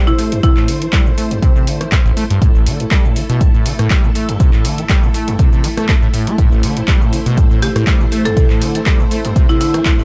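Acid house at 121 BPM in A minor, this hypnotic, raw excerpt sits on a single A minor chord with a light 16th-note swing. An overdriven analog drum machine playing handclaps, hi-hat, rim click and shaker starts at 0.1 seconds, joined by an up-front, punchy electronic kick at 0.4 seconds, both re-recorded in a large room. A squelchy, resonant saw acid bass drives the riff with a fast filter pluck, colored by tube saturation, lush chorus, cassette tape character, delay and sidechain pumping. Above it, a vintage string machine holds soft-attack, long-release chords with a sub octave and ensemble chorus, also pumping against the kick. A buzzing marimba struck with hard mallets adds brief, woody, airy melodic touches with delay, appearing at the very start and returning at 7.6 seconds. The production is dark with light reverb.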